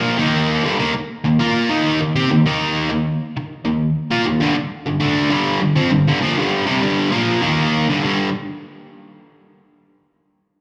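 Brooding and angsty, this short rock cut from a longer piece moves at a slow 66 BPM in a straight 6/8, settled in G minor. A single distorted electric guitar carries it alone, its bright, picked tone double-tracked and placed up front, with a slapback echo trailing each note across a range from G2 to Bb4. The harmony shifts from G minor to an Eb power chord at 0.8 seconds, returns to G minor at 4.4 seconds, and lands on a G power chord at 8.0 seconds, just before the guitar stops at 8.3 seconds. The sound is that of a live club gig heard through the venue's PA, with club ambience and a moderate plate reverb giving the guitar a long, roomy tail.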